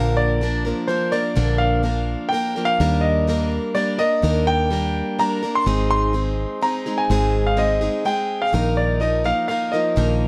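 A small, lightly reverberant room holds this short cut from a longer folk rock and heartland rock piece, its wistful, reflective mood carried in a straight 3/4. A clear, intimate grand piano sings the melody up front, its action noise audible, while a picked plugged-in steel-string acoustic guitar accompanies with a touch of finger squeak and a foam-muted, punchy fingered electric bass anchors the low end. All three play throughout the 10.3 seconds over a progression moving from Bb to Ebmaj7 and Ab before resting on Bbsus4.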